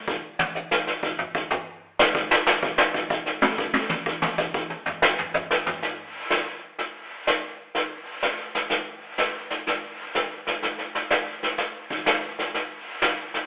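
A vintage brush drum kit carries this short jazz passage on its own, with brushes on the snare alongside hi-hat, kick drum and toms in a swing feel in 4/4. The kit enters at 0.1 seconds and plays as a solo until 5.8 seconds, then carries on into a second section that runs to the close at 13.5 seconds. Its sound is acoustic and natural, with a medium-tuned snare, a punchy kick and a rolled-off top, and it sits up front in the mix. The whole take has a live, one-room character, heard through a telephone-like filter and bathed in a wet stone-room reverb. The mood is swinging and warm, like a fragment lifted from a longer performance.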